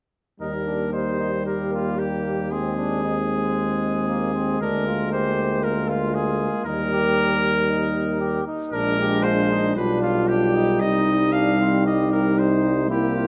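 In a straight, steady four-beat pulse, this triumphant classical brass quintet passage moves through a short, stately chord progression that closes on a minor chord, as though cut from a longer piece. The trumpet carries the melody up front with a clear, roomy tone, while the flugelhorn sings a second line with light vibrato and a vintage, mellow glow. Beneath them, the French horn sits in the background, its soft attack and distant, warm voice blending into the harmony alongside the close-miked trombone. The tuba anchors the bass with a clean, defined sound. All five instruments play together from 0.4 to 13.3 seconds, captured with close, detailed microphones inside a moderate concert hall reverb that lends the ensemble a spacious, ceremonial air.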